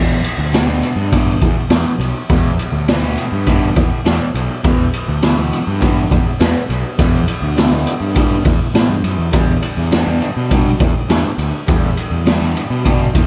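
A small, echo-heavy room gives this short psychedelic rock excerpt a close, murky feel, mysterious and trippy, moving at 102 BPM in a straight 4/4 in E minor. A double-tracked fuzz guitar plays the riff low, from E2 to G3, its distorted tone colored by phaser and dub echo. Underneath, a picked electric bass with overdriven fuzz holds the bottom between B1 and B2. The raw garage drum kit sits up front with a boomy kick, a medium-tuned snare and ride cymbal, its gritty, saturated sound rolled off at the top. A bright, jingly tambourine enters at 0.5 seconds, very quiet in the back. The harmony rests on Em7 before shifting to G at 9.3 seconds.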